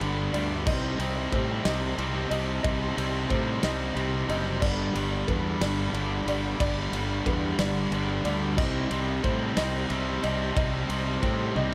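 A fuzz-laden electric bass sits up front, its dark, round, overdriven tone anchoring this soaring, cinematic post-rock fragment, cut from a longer piece, at 61 BPM counted in dotted quarters in a slow 6/8. Two bright, picked electric guitars play riffs over it: a cranked stack guitar with overdrive, and a crunchy overdriven guitar set further back. A loose indie drum kit in a small room drives the pulse with a punchy kick, a medium-tuned snare, toms and dark crash and ride cymbals, ending on a fill at 11.6 seconds. Underneath, a felt-muted upright piano plays soft, intimate arpeggios through an analog delay, its action noise audible, while a very quiet symphonic string section holds lush bowed chords with vibrato and portamento. The harmony moves between Gmaj7 and Cm6, and light reverb gives the whole band a sense of space.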